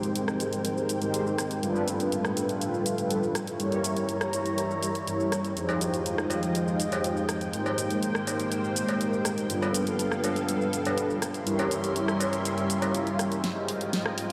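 A mellow synth brass sits up front, its round, detuned sawtooth-and-square tone carried on a sub octave with vibrato, chorus, cassette-tape color and an analog delay as it plays the accompaniment through this sleek, sensual nu-disco excerpt. Beneath it, a full string machine ensemble holds lush, slow-attack chords shaded by phaser and ensemble chorus, while a filter sweep moves across the strings for most of the passage. A layered, electronic pop drum kit keeps a straight pulse with hi-hat, rim click, shaker and a fat snare, and a vintage, band-limited cowbell joins in the background at 5.7 seconds. The harmony drifts through rich extended chords such as Abmaj9, G9, Gdim7 and Fm9, leaning on C7b9/G before settling back on Fm9. A very quiet electronic swell and riser appears at 12.9 seconds, and a drum fill at 13.4 seconds closes the cut, all bathed in a dreamy, cathedral-sized reverb.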